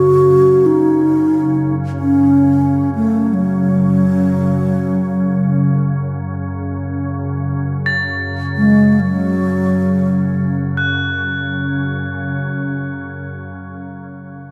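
World meditative music in free time and F# kumoi, haunting and meditative, where a breathy, hollow bass flute carries a close-miked melody touched by analog delay until 10.6 s over a pure, organ-like pad drone thickened by ensemble chorus and its own reverb, while soft, shimmering crotales ring high above, pad and crotales both sounding until 13.8 s in an echo-heavy chamber mix.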